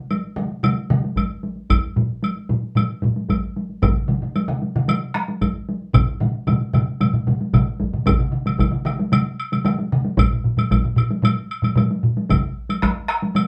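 A straight 4/4 pulse at 113 BPM drives this ceremonial Japanese taiko ensemble piece, cut from a longer performance, with a solo taiko drum struck with hard sticks and a woody woodblock starting together at 0.1 s, its vintage, band-limited tone set up front. Three further taiko ensemble parts join in turn, the last arriving at 2.0 s, all up front, one played with heavy sticks for a close, dry sound while the others use hard sticks. The group plays live in one room with a short, wet studio ambience, moving from an opening section into a second one at 8.1 s.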